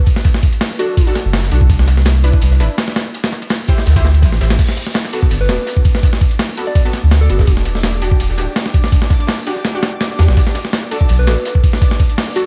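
A deep, round dub sub bass sits up front from 1.2 seconds in this nostalgic, raw drum and bass and jungle excerpt, under a gritty, tape-warm sampler breakbeat kit with a thumpy kick and a darker, crunchy second breakbeat kit tucked in the background, both touched by analog delay. Bold, punchy orchestra-hit-style synth stabs ring through dub echo, while a gentle, keys-like FM lead with chorus surfaces in brief phrases and a twinkling granular texture shimmers in from 5.1 seconds. The echo-heavy mix carries vinyl crackle over drifting chords, Bm7 and Cmaj7 giving way to Gmaj7 and Em7.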